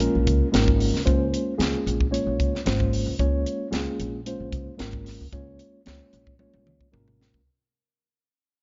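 A funky, soaring electric jazz fusion fragment opens with a reedy electric piano shimmering with fast tremolo over a single Db6 chord, a woody plucked upright bass and a crisp, airy drum kit with a punchy kick and high-tuned snare, all fading out in a dry, rolled-off mix as a drum fill arrives at 6.4 seconds.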